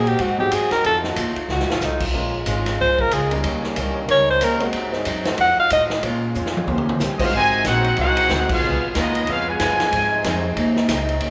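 A swinging big-band groove at 185 BPM in 4/4 drives this brassy jazz excerpt, cut from a longer piece, with a pizzicato upright bass, woody and growly, anchoring the low end and a big-room drum kit with a punchy kick and medium-tuned snare, its fills landing around 1.5 and 6.4 seconds. An up-front alto saxophone takes the opening solo, clear and full of vibrato and scooped notes, over a picked archtop guitar that sits boxy and very quiet with the odd finger squeak, a grand piano whose action noise is audible in an intimate sound, and a cup-muted trombone section holding veiled, distant chords in the background. The harmony cycles through dominant and minor seventh changes, with altered F7b9 and an Eb13 turnaround, before settling into Ab major. At 7.2 seconds the saxophone has finished and a trumpet section steps forward with a soft-attacked, vintage tone and vibrato, while a tight, clear trombone section carries a second line beneath it and the band hits an accent at 8.5 seconds. 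The whole ensemble sits in a wet recital-hall reverb that gives the recording a church or concert-hall sense of space.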